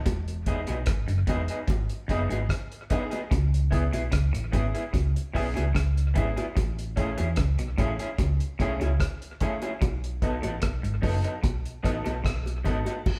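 A live, one-room band sound in a moderate large studio reverb carries this meditative, serious roots reggae excerpt at 74 BPM, where a cloth-damped, thuddy drum kit with dark cymbals and a tight kick and a round, hollow-body fingered bass sit up front, a slightly broken-up, lo-fi guitar through a small old amp plays accompaniment, and a worn, woody, slightly detuned upright piano adds stabs while a bright, twangy clean electric guitar riff and low-tuned bongos sit in the background over Emaj7, C#m7, Amaj7 and B7.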